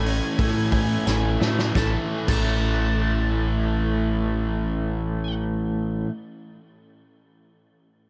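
A straight 4/4 pulse at 85-92 BPM opens this brief shoegaze and dream pop fragment, slowing down over its first 1.8 seconds with a drum fill, then moving from Amaj7 onto A major. The loose indie drum kit is gritty and saturated, with a punchy kick, a medium-tuned snare, dusky cymbals and a rolled-off top, and it stops at 2.5 seconds along with a jingly, close tambourine tucked in the background. Underneath, the picked electric bass sits up front with a round, amped tone, while three overdriven guitars stack their riffs: a biting one washed in reverse reverb, a crunchy one with subtle chorus set further back, and a bright, double-tracked garage guitar shaded by tremolo. Higher up, a direct-recorded clean guitar spins compressed arpeggios through ensemble chorus and slapback echo before stopping at 3.0 seconds, and a dark octave-fuzz lead hovers between G#5 and A5 in the background with its own slapback. 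The mood is dreamy and hazy, held in a shadowy, warm studio ambience.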